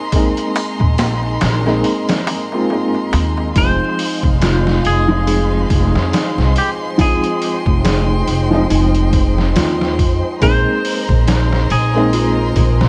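A swung trip hop beat at 70 BPM in 4/4 anchors this hypnotic, cinematic F minor excerpt, with a gritty, pitched-down sampler-style kit up front and a woody pizzicato upright bass joining at 0.8 s, while a crisp metal-shell darbuka sits in the background until 3.5 s. A soft felt-muted upright piano with tremolo and tape echo carries a filter sweep through the opening, a clean picked electric guitar plays a tape-echoed melody, and a rich bowed violin section holds sustained chords moving from Bb9sus4 to Fm7. From 3.6 s a bell-like celesta adds delicate arpeggios through digital delay, soon joined by a flickering granular texture, and the mix sits in studio reverb under a layer of vinyl crackle.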